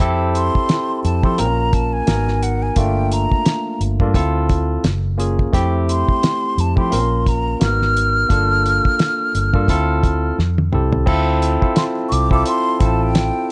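Lush 1970s-style soul with a romantic, smooth mood, where a breathy, mellow silver concert flute with vibrato and slapback echo carries the melody from 0.4 seconds over a barky, lightly overdriven tine electric piano, a round, foam-muted fingered electric bass and a cloth-damped, thuddy drum kit with a fat snare and dark cymbals, all in a small room, with a drum fill at 10.4 seconds leading into a new section at 11.1 seconds.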